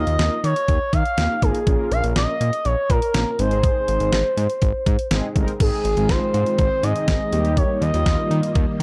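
Synth-pop with a driving, cool mood, this short cut sets an up-front, smooth sawtooth lead with portamento, vibrato, chorus and tape echo over round, brassy synth brass accompaniment, a thick detuned analog bass with a filter sweep, and a clean 12-bit drum machine with a thumpy kick and fat snare, while a lush vintage string machine joins in the background at 5.6 s, in a dark mix with light reverb.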